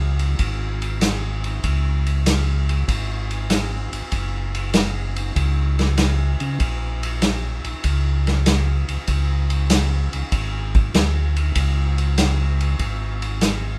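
Soul jazz organ trio excerpt at 97 BPM with a soulful, greasy swing, where a mellow, round tonewheel organ carries the bass line from 0.0 seconds with chorus vibrato, audible key click and a stopped rotary speaker, joined at 0.2 seconds by an up-front vintage acoustic kit of punchy kick, medium-tuned snare, hi-hat and dark ride cymbal in a small, pumping room, all under light reverb.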